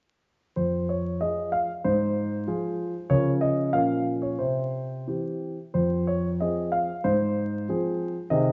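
Restless yet elegant, this brief excerpt from a classical-period piano sonatina moves in a flexible, rubato two-beat pulse, with a solo concert grand playing from 0.6 to 8.5 seconds. The piano sits up front with a warm tone and deep bass, its phrases passing through minor harmonies to a major chord before settling back home. A moderate recital-hall reverb surrounds it, while vinyl crackle and a dulled top end lend the recording an aged, dusty character.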